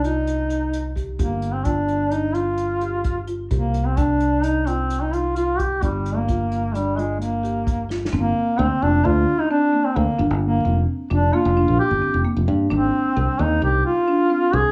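Brooding and tense, this short cut from a longer progressive instrumental piece moves at 130 BPM in an uneven 5/4 meter with a straight feel, tuned slightly low at A4 = 439 Hz. An up-front duduk carries the melody throughout, its soft attack, vibrato and smooth top giving a folk-style solo voice that sits in a plate reverb. Beneath it, a marimba played with soft mallets spins mellow, woody arpeggios from the background, while a fingered electric bass sounds bright, growly and punchy close to the front. An unplugged drum kit played with bundle sticks keeps hi-hat, kick and snare dark and rolled-off, with a drum fill at 7.9 seconds before the drums drop out at 8.2 seconds. The harmony circles around C minor and G minor chords, settling on an F7 with the third omitted near the end, and the whole is heard in a small studio room with moderate reverb.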